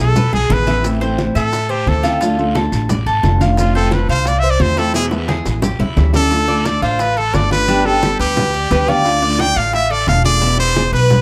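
Lightly reverberant, this danceable, warm Cuban son and guajira cut opens on a brilliant, punchy trumpet with vibrato and tape echo, soloing up front until 6.3 seconds over a woody, thumpy pizzicato upright bass. A dark, fingerpicked nylon-string guitar with audible finger squeak and a metallic, double-strung Cuban tres spinning arpeggios fill out the harmony. From 0.2 seconds, the background percussion of bright, hard-hand congas, round low-tuned bongos, grainy maracas and a very quiet, raspy guiro drives the groove, with drum fills at the start and again from 4.9 to 6.3 seconds.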